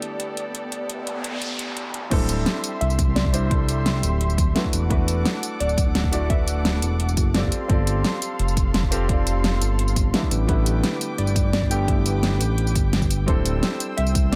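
A smooth, dark sawtooth synth bass sits up front in this lush, melancholic liquid drum and bass fragment, arriving with a punchy, overdriven electronic kick at the drop at 2.1 s after a brief electronic noise sweep, while a grand piano with digital delay and veiled, muted chamber strings holding sustained chords under sidechain pumping run throughout, an overdriven pop drum kit adds a fat snare, metallic hi-hats, crash cymbal and tambourine, and a soft, round, detuned pluck carries the chorus-washed melody in the background of a dry mix with little reverb.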